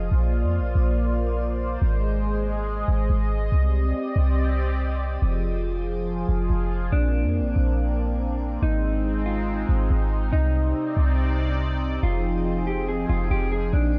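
Dreamy and blissful, this fragment of half-time hip hop at 141 BPM rests on a bright, detuned sawtooth pad with chorus holding sustained chords over a deep, boomy, up-front 808-style sine bass, while a mellow, fingered electric guitar, dark-toned and softened by a low-pass filter and digital delay, enters at 6.9 s with a melody as the Bbadd9, Ab, Cmadd9 and Fm7 progression repeats in a shadowy, warm digital ambience.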